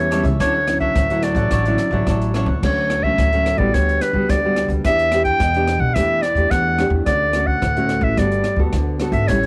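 A bright, up-front clarinet carries the classical-style solo melody in this sunny, festive samba and choro passage cut from a longer piece, its tone coloured by cassette tape. Beneath it, a full-bodied fingerpicked nylon-string guitar and a woody, growly pizzicato upright bass move through chords such as Dmaj9, Em7 and Gmaj9, while a crisp picked cavaquinho plays only until 2.6 seconds. From 0.1 seconds an open jazz drum kit, also given a cassette-tape tint, adds crash cymbal, hi-hat, rim clicks and a boomy kick, all captured in a dry home recording.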